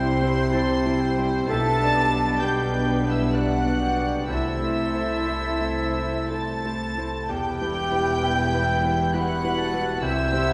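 Heard from further back in a reverberant scoring stage, this moving, hopeful cinematic orchestral passage in a rubato 3/4 sets a pure, floating high violin melody over a second violin section, airy flutes, a mellow clarinet and a distant oboe, with brilliant grand piano and dark violas in accompaniment, sustained chords from a roomy French horn section, and rich bowed cellos and double basses anchoring the bass through a C, G/B, Am/C, Em progression.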